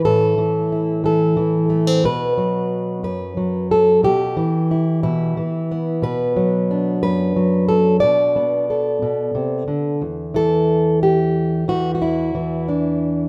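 Folk fingerstyle piece for solo steel-string acoustic guitar, wistful and melancholic, moving at 60 BPM in a straight 6/8 in E minor, with tuning set slightly below standard pitch. The plugged-in guitar is fingerpicked up front with the warm tone of fresh strings, spanning E2 to D5 as it passes through A5, B5, Em/B and Bm7 before settling on Em7 at 10.0 seconds. A lush large-studio reverb gives the sound a spacious, lingering tail in this brief excerpt cut from a longer piece.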